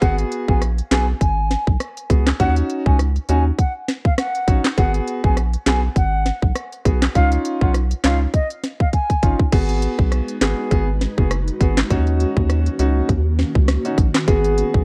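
A wooden flute with tape echo carries the melody over clear grand piano, a round, deep analog bass and a tight, up-front island pop drum kit of kick, sharp snare, hi-hat, rim click, handclaps and crash, setting a bouncy, sultry dancehall groove at 101 BPM in G# dorian with a swung sixteenth feel. During a drum fill, the flute drops out at 9.4 seconds, and an ethereal, airy pad with chorus, tremolo and sidechain pumping slips in behind at 10.3 seconds, while a velvety synth lead with phaser appears only at 14.3 seconds as this cut-off passage ends. The whole thing sits on worn, warbling cassette tape with audible pitch drift and very little reverb.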